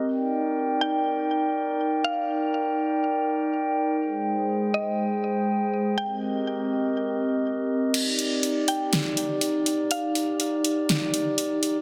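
A glassy, ethereal glass harmonica sits up front from the opening at 0.0 seconds, holding slow-attack sustained chords with a gentle beating shimmer. This short cut from a longer piece is dreamy, floating atmospheric cloud-rap in Eb major at 122 BPM with a half-time feel. The chords move from Ebmaj7 to Abmaj7 and Cm7 before returning to Ebmaj7. A woody, round, mallet-like FM synth pluck carries the melody in a high range, with fast-attack, decaying notes softened by chorus, a low-pass filter and delay. At 7.9 seconds a smooth, electronic R&B drum kit arrives up front with a fat snare, metallic hi-hats and a crash cymbal, sounding as if re-recorded in a large room. Light reverb frames the mix, and the master is dense and heavily limited in a modern style.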